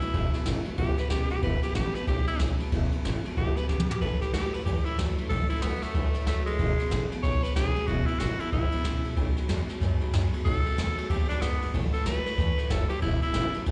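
Rowdy and retro, this rockabilly fragment swings lightly at 186 BPM in E major, cycling through E6, A6 and B6 chords. A raspy tenor saxophone takes a forceful, gritty solo across the whole 13.7 seconds, up front with light vibrato, a smooth top, plate reverb and slapback echo. Underneath, a woody, thumpy upright bass on gut strings anchors the low end while a jazz kit played with brushes sits up front, its boomy kick and dark cymbals punctuated by a brief fill at 3.7 seconds. A twangy, slightly broken-up electric guitar through a small old amp plays a low riff in the background, colored by analog chorus and slapback echo, and a very quiet picked dreadnought acoustic guitar with fresh strings fills in accompaniment. The sound is that of a live gig heard through the venue's PA, with recital-hall reverb, a dulled top end and a faint mains hum.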